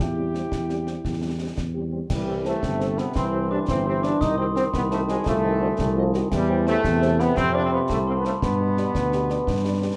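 A rousing, festive military-style march for wind band in 6/8 at 114 BPM in C major opens with a very quiet, mellow trumpet section carrying the melody over a dark, up-front tuba bass, a warm euphonium line in the background, and close, dry concert snare, bass drum and clash cymbals. A brief airy, hollow wooden piccolo line drops out at 1.6 seconds, while a French horn section with light vibrato fills in the accompaniment from just after the start. At 2.1 seconds a bright, tight trombone section moves up front with sustained chords and a ringing, bell-like glockenspiel played with soft plastic mallets joins, as the harmony passes through a diminished chord before reaching F and G in a dark, reverberant large-studio sound.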